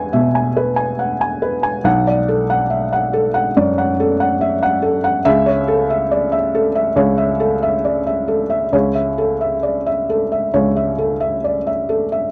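Neoclassical minimalist piano in A major, this short cut from a longer piece moves at a rubato 66-71 BPM in 4/4 with a tender, peaceful mood. A felt-muted upright piano plays solo throughout the full 12.3 seconds, ranging from B1 up to G#5. Its tone is soft, mellow and intimate, with a short sustain that keeps each note close and hushed, and it sits up front in the mix. The harmony passes from E to Bm7 at 1.9 seconds and settles on A/C# at 5.3 seconds. The dry, close sound, with little reverb, recalls a 1970s-style studio recording, though lossy compression artefacts colour the fidelity.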